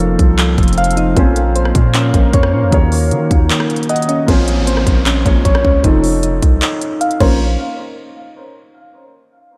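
A distorted, heavy 808-style bass drives this melancholic, eerie half-time trap excerpt at 154 BPM in Bb harmonic minor, under up-front trap drums with a hard-clipped kick and crisp hats, round electric-piano-like synth keys playing arpeggios through chorus and diffuse delay, a dark concert grand piano, and a deep, detuned ambient pad that drops out at 4.3 seconds as a downlifter enters, all within a dreamy, reverb-soaked mix.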